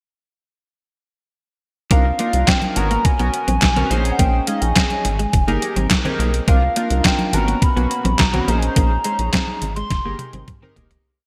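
Bright 1980s-style digital production with light reverb frames this late-night early-eighties boogie funk piece, where a detuned 8-bit drum machine with gated reverb drives a four-on-the-floor beat of thumpy kick, clap-layered snare, hi-hat and toms, a rubbery square bass bounces up front with chromatic approach notes, a glossy chorused polysynth plays syncopated rootless chord stabs, a muted clean electric guitar line and a syncopated conga groove sit in the background, and a hollow, woody clarinet-like synth lead carries a mellow motif with vibrato, all fading out from 8.8 seconds with a closing drum fill at 9.9 seconds.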